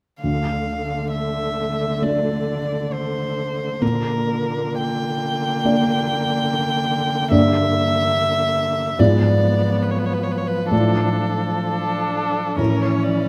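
Elegiac and melancholic, this excerpt from a slow, rubato romantic movement for piano quartet sets a warm, smooth violin melody with vibrato up front over a dark, mellow baby grand whose action noise is audible, while a rich cello carries a second line and a soft-attacked viola adds expressive portamento to the accompaniment, all captured by close, detailed microphones in a moderate recital-hall reverb.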